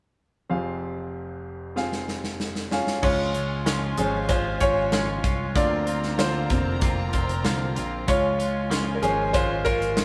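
A concert grand piano opens this bittersweet, earnest piano-driven pop excerpt at 0.5 seconds, up front with a brilliant, polished tone, deep bass and short sustain as it lays out an Fm chord at a steady 95 BPM in a straight 4/4. At 1.8 seconds an acoustic drum kit enters with a fill, its punchy kick, medium-tuned snare, hi-hat and bright crash cymbal sitting mid-forward. At 3.0 seconds the piano takes a solo as the band joins: a picked electric bass with a dark, round, direct sound; a clean, twangy, compressed electric guitar playing a riff; and a lush bowed string section that holds sustained chords in the background with vibrato, portamento and a smooth top. The harmony moves through Db and Bbadd9 before returning to Db. The players sound as if they are performing live together in one room, with a moderate stone-room reverb that gives the ensemble an earnest, open ambience.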